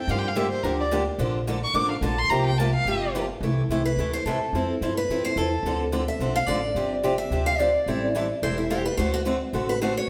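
A swinging 4/4 pulse at 216 BPM drives this lively, charming acoustic string-swing excerpt in jazz manouche style, where a dark, expressive bowed violin with vibrato and portamento takes the melody up front until 3.1 seconds, a woody, thumpy pizzicato upright bass on gut strings anchors the low end, a boxy parlour guitar with fresh strings picks the accompaniment, and from 3.9 seconds a bright concert guitar takes over the solo line as the harmony settles into C major, all played live together in a stone room with a reverberant tail.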